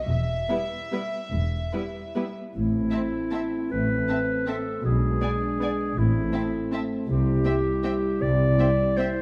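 Set in a dark studio production with moderate scoring-stage reverb, this sweeping, brooding orchestral ballroom waltz fragment moves with a loose rubato in 3/4. Floating, pure violins carry the melody over a close, shadowy cello section and double basses, while a second violin line and the violas add soft-attack sul tasto support. At 2.5 s an up-front, clear solo clarinet enters with a second line as a mellow French horn section holds sustained chords.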